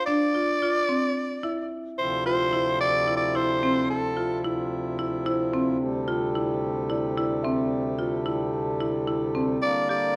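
A raspy, gritty soprano saxophone opens this short contemporary chamber piece, carrying the melody up front over a delicate, bell-like celesta that rings softly in the background, and a marimba joins almost at once with woody, percussive arpeggios. The music moves in an uneven 7/8 at 220 BPM counted in eighths, with a straight feel in D minor, and its mood is pensive and restless. At 2.0 seconds a reedy pedal harmonium arrives with sustained chords, its breathing tone sitting close and present, while the harmony moves from Dm9 to Am7/D and then to Bb6/D. The saxophone's close-miked, pop-style solo line, colored with vibrato, stops at 4.4 seconds and returns only briefly near the end, leaving the bright padauk-bar marimba, the harmonium's sustained chords and the mellow celesta to carry the texture. Light reverb and a dark, warm production frame this fragment, which is cut from a longer work.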